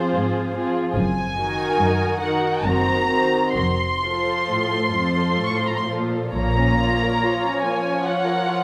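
A veiled, up-front muted violin melody leads this solemn, melancholic fragment of a slow romantic movement for string orchestra, moving in a rubato 3/4 at 61-74 BPM in Bb minor. Beneath it, a soft-attacked second violin line and close violas carry the accompaniment, lush cellos hold the bass, and dark double basses join at 1.0 s before both low sections stop at 7.1 s. The whole ensemble plays con sordino with vibrato, set in a generous scoring-stage reverb with a faint mains hum.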